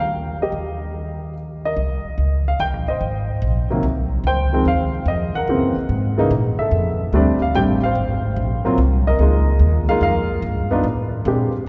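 Jazz piano trio excerpt in a swinging 3/4 at 145 BPM, warm in mood and set in C phrygian, with a cathedral-like reverb that lets the room ring long around the players. A worn, intimate baby grand carries the melody, its short sustain and audible action noise heard up close, while a woody, thumpy pizzicato upright bass on steel strings holds down the low end until 11.7 seconds. The harmony drifts through rich colours such as Ebadd9, Dbmaj9 and F#7 before reaching Bb7 at 11.3 seconds.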